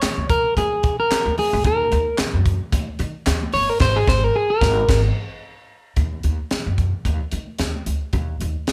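A swung sixteenth-note groove at 111 BPM in 4/4 drives this cool, funky excerpt in Eb dorian, cut from a longer piece and played by a band live in one room with light reverb. An up-front upright bass, woody and thumpy with steel strings played pizzicato, and a crisp fusion drum kit with a punchy kick, high-tuned snare, dark cymbals, hi-hat, crash and handclaps hold the groove through the full 8.7 seconds. Bright, high-tuned congas with hard hands sit in the background throughout. An electric guitar at the edge of break-up, fingered and slightly broken-up with a warm tone, comps up front until 5.0 s, over an Eb7(no3) chord that moves to Absus2 at 3.8 s. A clean electric guitar solo runs through the opening, and from 3.8 s to 6.0 s the band hits a shared accent. At 6.0 s the harmony drops out and the rhythm section carries the closing passage alone.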